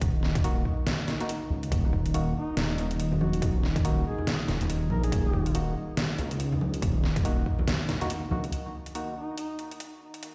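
A rumbling, detuned sawtooth bass sits up front in this cavernous, heavy deep dubstep excerpt at 141 BPM in half-time Eb minor, joined by a punchy electronic kick, a dubstep kit of hi-hat and snare, a moody ambient pad in the background, hollow organ stabs and ringing congas, plus a mellow folk-style duduk with vibrato and scooped notes entering at 2.4 seconds, with dub echo on the stabs, congas and duduk, a large studio reverb around the mix, and a filter sweep on the pad from 8.5 seconds.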